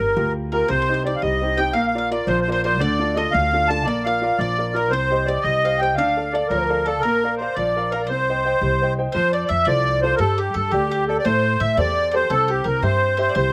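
Celtic folk jig in 6/8 at 114 BPM in C dorian, wild, dark and lively, led by a reedy, sweet accordion with light tremolo tuning and slapback echo up front, joined throughout by a picked, double-strung mandolin, a pure, hollow baroque flute with vibrato and slapback echo sitting distant in the background, a brilliant upright piano with slapback echo, and a thumpy pizzicato upright bass, all heard dry and outdoors as the chords move from Gm7 through Cm, Bb and Dm before a second section at 9.1 s shifts through F, Gsus2 and Am7 to C in this cut from a longer piece.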